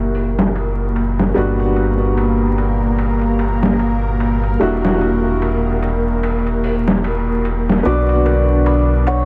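Cinematic and smoky, this trip hop excerpt at 74 BPM with a swung 16th feel sets a woody upright piano with tremolo and tape echo over mellow string-machine cellos thickened by ensemble chorus, a deep, round analog bass sitting up front, and a pitched-down, gritty boom bap sampler kit of hi-hat, ride and snare muffled by low-pass filtering, moving from F#7b9 through Gmaj7 and Em9 to Bm before a shimmering hammered santur melody with 12-bit grit and dub echo and a delicate, slightly out-of-tune music box arpeggio with tape echo enter at 7.9 seconds, the mix carrying small-room ambience, heavy echo and vinyl crackle.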